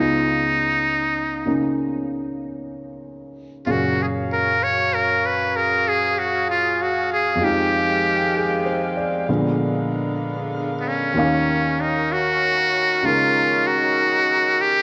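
A wistful, smoky jazz ballad in Eb minor, this excerpt moves at a slow 64 BPM in 4/4 with a swung eighth-note feel. A trumpet with a metal mute carries the melody from the start, its tone buzzy and thin yet brilliant, with vibrato, soft attacks and scooped notes placing it up front as a jazz solo voice. Beneath it, an intimate grand piano supplies the accompaniment with short sustain, its action noise audible close up. At 3.7 seconds a clear saxophone section enters with sustained ensemble chords, smooth on top and touched with light vibrato. The harmony moves from Db9 through Gbmaj7, Fm9 and Bb7b9 before settling on Ebm9, all wrapped in a moderate plate reverb with a long 3.2-second tail.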